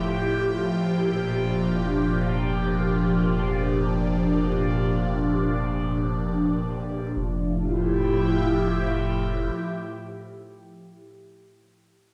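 Serene and warm, this ambient excerpt floats in free time in F major, built on an airy, breathy pad whose detuned sawtooth and noise layers sit up front, sustaining slow-blooming chords through chorus, phaser and cassette tape coloring. Beneath it, a round sine sub bass holds a deep F until 9.5 seconds, while the pad carries on alone to 11.1 seconds, moving from Fmaj9 to Gm7/F and back to Fmaj9 at 7.2 seconds. A wet spring reverb and the soft grain of a home cassette recording give the whole piece an intimate, hazy glow.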